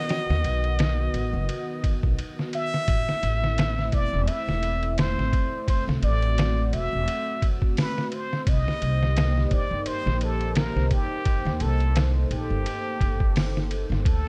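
A slow trip hop groove at 86 BPM in 4/4 sits on a gently swung sixteenth-note feel, carried by a sampler-style drum kit that sounds compressed, pitched down and muffled, with a thumpy kick, a medium-tuned snare, hi-hat and ride cymbal placed up front. An upright bass enters at 0.3 seconds, plucked on gut strings with a woody, dark tone and a touch of tube saturation, sitting just as forward as the drums in the low register. Beneath them a deep analog pad holds sustained chords from the start, its detuned sawtooth and triangle layers, sub octave and slow attack softened by chorus into a moody haze. Over this a plunger-muted trumpet plays a bright, jazz-style solo melody with wah-wah inflections, vibrato and scooped notes, trailed by dub echo. The harmony moves from B to Am at 2.9 seconds and settles on Cm7 at 8.5 seconds, all wrapped in dark digital ambience that gives this brief, brooding fragment of a longer piece its shadowy atmosphere.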